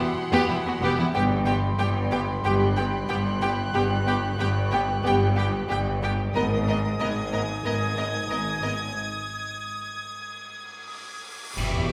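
Opening on Emadd9, a rich, bowed violin melody with a focused second violin line and a high, expressive violin texture sits over a very quiet viola section with portamento, mellow background French horn chords, a ringing, thumb-plucked concert harp riff and a lush cello bass, joined at 0.5 s by distant double basses, in this uneasy, eerie suspense film score at 92 BPM in 4/4, where a huge cymbal swell and sub drop at 10.7 s lead to a soft-attack trombone chord and an up-front hit of bright clash cymbals and concert bass drum at 11.6 s, set in a recital hall reverb.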